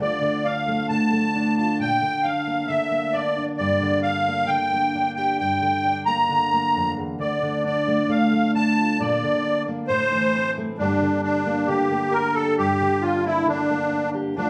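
Yearning and bittersweet, this indie folk excerpt with a building arrangement moves at 134 BPM in a straight 4/4, as a reedy, shimmering musette accordion carries the melody up front over a warm fingerpicked dreadnought acoustic guitar, both playing throughout the 14.5 seconds through a chord progression from Dm to Gm, with a wet studio reverb giving the sense of a band playing live in one room.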